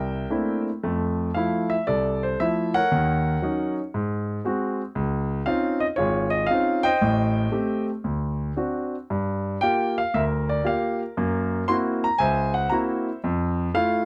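Solo jazz piano at a relaxed, swinging 116 BPM in 4/4, with a loose rubato feel running through the 8th-note swing. A warm concert grand carries everything alone across the whole 14.1-second excerpt, its deep bass and natural, up-front tone captured by close, detailed microphones with light reverb. The harmony moves from C13 into Fmaj7 at 0.8 seconds, passes through Dbmaj9 and a Gb7#11, and comes home to Fmaj7 at 13.2 seconds.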